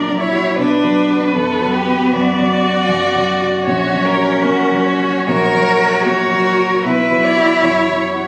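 Elegiac and melancholic, this brief passage from a slow romantic movement for piano quartet unfolds with a supple rubato feel in 4/4. A single cello carries the second line with a rich, focused tone that sits up front and outweighs the violin, whose expressive melody is shaded by vibrato and portamento. The viola adds smooth, even bowed support, and both string accompaniment and melody share a warm glow. Underneath, the concert grand supplies a dark, mellow accompaniment with deep bass and a natural sound, all four players sounding together throughout the 8.3 seconds. The harmony sways between F#/A# and B minor, and the moderate reverb of a recital hall, captured on a phone in the room, lends the group an intimate, live presence.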